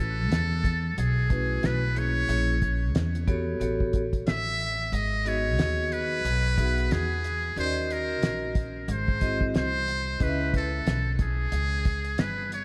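Jazz-hop at 91 BPM with a 59% 16th-note swing, this warm, smooth excerpt from a longer piece sets a buzzy, brilliant metal-muted trumpet up front on the melody, its light vibrato and scooped notes trailed by delay, over woody, thumpy pizzicato upright bass on gut strings. A cloth-damped drum kit, dark and dry with a fat snare, tight kick and rolled-off top, joins at 0.3 s, while a bright, ringing vibraphone struck with hard mallets, motor off, enters at 1.3 s to comp airy chords moving from A69 through G#m7 and G#7b13 to C#m7. The kick drops out between 4.9 and 6.2 s, and a moderate church reverb soaks the mix in a dreamy haze.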